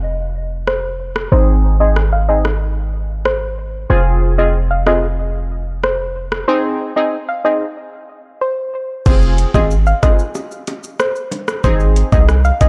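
A dark, digitally ambient production opens this tough, bouncy dancehall track in F minor, cut from a longer piece and moving at 93 BPM in a straight 4/4. A hard-hitting 808-style bass starts things alone at 0.0 seconds, heavy and punchy with a sine core and a noise layer, sitting up front beneath a filter sweep that runs through the first section. The afro-pop drum kit arrives almost at once, electronic and produced with a knocking kick, metallic hats, rim click, shaker and crash, roughened by vintage 12-bit sampler grit and re-recorded in a large room. Alongside it a soft, round pluck carries the melody high up, its gentle tone darkened by a low-pass filter and thickened with chorus and tape echo. A brassy synth stab with a bright, evolving sawtooth and ring-modulated edge adds chorused accompaniment over chords moving between F5, Ab and Fm, with a break from 6.5 seconds. At 9.1 seconds a new section brings in tight, high-tuned acoustic bongos, played with hard hands and kept very quiet in the mix.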